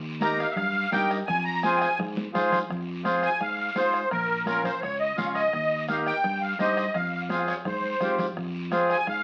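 A shimmering musette accordion carries the melody up front in this passionate, danceable cumbia at 169 BPM in F minor, with a dark, full second accordion comping close beside it and an accordion solo opening the first 2.7 seconds. A punchy, growly fingered electric bass anchors the low end, while soft-handed, high-tuned congas and a dry bombo struck with a soft beater sit in the background, joined by a raspy guiro in a live room, with drum fills arriving at 2.2 and 7.3 seconds. Wet studio reverb and the crackle of a very old 78 rpm record lend the piece an aged, dancehall glow.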